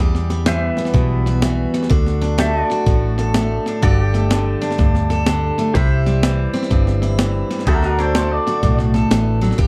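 A bright, full-bodied dreadnought acoustic guitar with fresh strings sits up front from the start, picking out accompaniment over a dark, round, foam-muted electric bass with a punchy, amped tone, setting an easygoing, sunny honky-tonk groove at 125 BPM with a swung feel. A gritty, compressed sampler-style drum kit joins almost at once, its thumpy kick, medium-tuned snare and hi-hat driving the classic country shuffle. From about 0.5 seconds, a clean pedal steel guitar, played with fingerpicks and slide, floats sustained chords with volume swells beneath the other parts. The harmony moves through Em, D, Gsus2 and C before returning to D, and at 7.7 seconds a twangy, slightly broken-up electric guitar through a small old amp adds a brief second line soaked in tape echo. The production is dark and warm with a moderate studio ambience, and this excerpt is cut from a longer piece.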